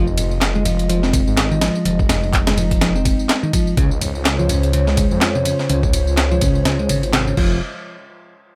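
A gritty, compressed sampler-style breakbeat kit with a thumpy kick and high-tuned snare drives this raw, funky 125 BPM breakbeat excerpt in F minor, swung on the 16ths and cycling from Fm7 to Dbmaj7, with a menacing, saturated detuned saw bass up front, a growly picked electric bass riff roughened by 12-bit sampler grit and delay, a layered garage kit adding handclaps, ride and tambourine, very quiet low-tuned congas, and a deep, moody analog pad pumping beneath it all in light reverb, with a band accent landing at 7.1 seconds.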